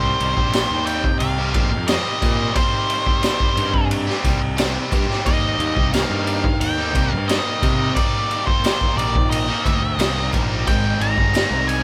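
Heard live in one room with light reverb, this short cut from a longer psychedelic rock piece moves at 89 BPM in a straight 4/4 in C minor, with a mysterious, hypnotic mood. A dark, distorted octave-fuzz lead guitar carries the melody between C5 and Bb5, while a bright, double-tracked crunchy overdriven guitar plays a picked riff beneath it. The fuzz picked electric bass is overdriven and amped, and a reedy, nasal hand-pumped harmonium breathes sustained chords in the background. The raw garage drum kit enters at 0.2 seconds, up front and gritty, with a punchy kick, a high-tuned snare and ride cymbal in a small-room sound with a rolled-off top. A very quiet, jingly tambourine joins at 0.5 seconds, and the harmony shifts from Cm7 to Eb6 at 5.3 seconds before reaching Abmaj7 near the end.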